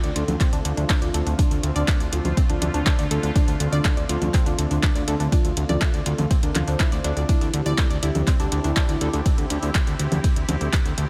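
Melodic techno with a dramatic, dark mood, built on an up-front deep electronic kick, a saturated, detuned sawtooth bass and a deep house kit of congas, handclaps, metallic hats and ride, with sidechain pumping breathing through the bass, kit and synths. Above them, a bright, wave-folded analog pluck spins arpeggios through chorus and diffuse ambient delay until 9.2 s, while an airy, evolving resonant pad sustains Dm7 and later Cadd9/D chords in the background. A soft, round octave-layered lead with sub-octave weight, phaser and vibrato carries the melody, and a very quiet jazz brush kit of hi-hat, ride and high-tuned snare adds a smooth acoustic layer, all set in light small-room reverb.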